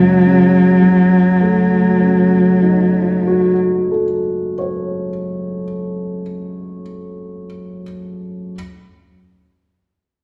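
This is a classical, impressionist duo for cello and grand piano, a brief fragment cut from a longer piece, with a mysterious, hazy mood. It moves at a very slow 31 beats per minute in dotted quarters, in 12/8 with a rubato feel, set in F# dorian over an F#m6 chord and tuned to A4 = 436 Hz. Up front, a single bowed cello carries the melody on F#3 with a rich tone, vibrato, a soft attack, portamento and expressive phrasing, sounding only from 0.0 to 3.5 s. The baby grand piano accompanies from the start until 8.6 s, spanning F#1 to C#5 with a dark, mellow character and long sustain. A wet recital hall reverb with a 1.6 s decay places the listener further back in the room, wrapping both instruments in a soft halo.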